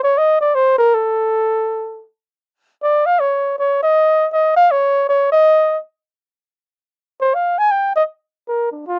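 A breathy flugelhorn plays alone up front throughout this short jazz excerpt, its mellow tone, soft attack, smooth top and vibrato lending a sophisticated, warm mood to a swung 159 BPM in 4/4, heard in a dry, close 1970s-style studio sound with light reverb.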